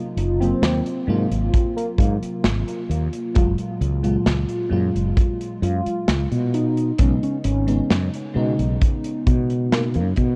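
Hazy and nostalgic, this slow vaporwave excerpt at 66 BPM drifts over rich jazz chords (Ab13, Gbmaj9, B69), with an FM electric piano and soft pad layer, lush and detuned with tremolo, subtle chorus and analog delay, opening the piece as a round, dark fretless bass and a modern studio kit of hi-hat and snare join at 0.2 seconds. A velvety sawtooth-and-triangle synth lead with chorus, vibrato and tape echo carries the melody from 0.4 seconds, while a punchy, up-front kick arrives at 1.5 seconds, the kick and kit both roughened by vintage 12-bit sampler grit. The whole recording sits in a small, airy room and is steeped in worn cassette tape with warbly pitch drift.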